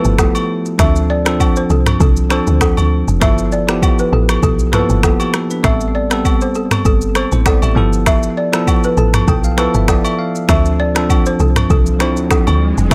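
A dry, close-sounding cut from a longer afrobeats track, hypnotic and smooth with a light swing, where a bright, bell-like tine electric piano plays G13, Dm7 and Am9 chords and takes a fill at 8.7 seconds, an up-front electronic drum kit brings a deep kick, finger snaps, rim clicks, shaker and toms, a punchy, woody log drum bass holds the low end, a round, soft-mallet balafon riff sits mid-forward with delay, woodblock and agogo bells add acoustic colour, and a very quiet riser enters at 11.6 seconds.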